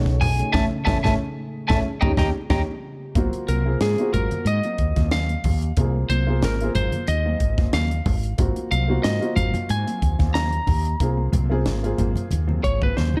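Riding a 92 BPM groove in 4/4 with a light sixteenth-note swing, this slick, soaring electric jazz fusion excerpt rests on a polished drum kit with a high-tuned snare and punchy kick, soft-handed low-tuned congas in the background, and a round, woody fretless bass up front with lush chorus. The band hits accents and a drum fill over B13, Amaj7 and D#13 while a moody, warbling ambient pad sustains until 3.1 s. At 3.2 s the slightly broken-up, compressed lead guitar launches a solo in Ab mixolydian over Ab13, backed by a boxy, worn baby grand with audible action noise and clean fingered guitar stabs carrying slapback echo, all in a dark, dry production.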